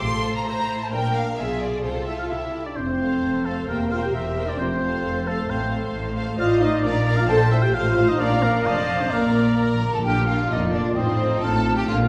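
A brisk, spirited classical-period movement for symphony orchestra opens with the full string body: violins carrying a graceful melody over a second violin line, smooth violas filling in the accompaniment, and lush, focused cellos and double basses anchoring the bass. The music moves at 132 BPM in a straight 2/4, beginning in F major and shifting toward Bb major from 6.4 s. At 2.1 s a warm oboe and a mellow French horn section join, the horns holding soft-edged sustained chords while the oboe adds its own second line. A dark, distant clarinet enters at 3.2 s in the background, and very quiet, dry timpani on medium mallets punctuate the middle passage, ending with a brief fill that leads back to the opening material. A pure, metallic flute joins late at 9.6 s, and the whole fragment, cut from a longer piece, sits in a reverberant hall with a 1.6-second decay.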